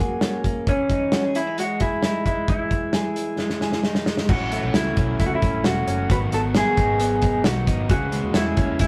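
A picked electric guitar through a small old amp carries the melody, slightly broken-up, lo-fi and up front. Beneath it, a clean, direct-recorded electric guitar plays compressed arpeggios bathed in spring reverb. This opens a bright, breezy stretch of jangly indie pop at 133 BPM in a straight 4/4, moving from F#add9 to a rootless C#madd9/E. A loose, acoustic drum kit joins at 0.2 seconds with a punchy kick, a medium-tuned snare, hi-hat and dark crash cymbals, sitting forward in a pumping room sound, and a drum fill runs from 3.4 seconds. At 4.3 seconds the harmony shifts through A6 and G#m7 to C#m. A round, foam-muted fingered bass with a vintage amped tone arrives there, along with an overdriven guitar tucked in the background. The whole excerpt has the rough, roomy feel of a rehearsal-space recording with moderate reverb, and it is cut from a longer piece.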